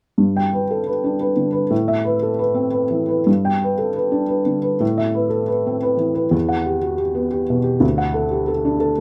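Tender and peaceful, this short neoclassical minimalist piece, cut from a longer work, sets a solo felt-muted upright piano in G major at 118 BPM in 3/4, its beats uneven and pulled by rubato. The piano sits up front, intimate and dark, with a boxy tone and audible action noise, spanning D2 to G5 in a light reverb. Its harmony moves between G and Amadd9 before turning at 3.3 seconds through G, Amadd9 and Emadd9 to land on D by 7.8 seconds.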